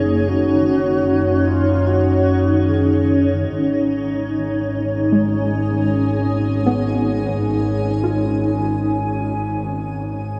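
A lush, wet hall reverb surrounds this ambient excerpt, and a cassette-tape grain with a hint of small-room ambience gives it a worn, intimate character. Floating in free time, the mood is weightless and peaceful. A cloudy, evolving granular pad sits up front, holding blurred, full-bodied chords with slow attacks and long releases, while a soft, round pluck with chorus plays dark arpeggios in the background. A rich, earthy bowed double bass section, close and up front, grounds the harmony. An airy, close-miked alto flute with vibrato plays a brief tongued melody through shimmer reverb and diffuse delay, stopping at 3.4 s. The harmony moves from F#maj9 to G#madd9 at 3.5 s, and the music fades out from 7.7 s.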